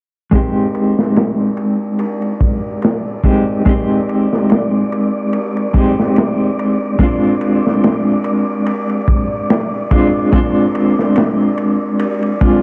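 Trip hop, brooding and dark, cut from a longer piece: a mellow, clean, fingered electric guitar sits up front with tremolo, tape echo and a filter sweep, moving from Abmaj7#11 to Fm6/Ab, over a crunchy, gritty, saturated breakbeat kit of tight kick, medium-tuned snare and dusky ride with a rolled-off top. From 1.6 seconds a breathy, wind-like tuned noise layer hovers faintly on a sustained D5 with its own reverb. The whole home cassette recording carries a tape haze in a moderate studio reverb.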